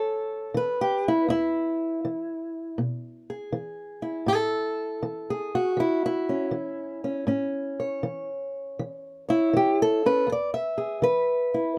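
Acoustic country blues with a swaggering, laid-back mood, moving at 80 BPM in 4/4 with a triplet swing on the eighth notes. A single fingerpicked guitar carries the whole piece, an old ladder-braced acoustic whose worn strings give it a dark, woody, boxy voice. The guitar sits up front and ranges from deep bass notes to high trebles, tuned a touch below standard pitch. The harmony rests on A and E, starting on A, moving to E at 1.3 seconds, returning to A at 4.3 seconds and turning back to E at 10.3 seconds. A light reverb surrounds the playing, and this short fragment, cut from a longer piece, lasts just under 12 seconds.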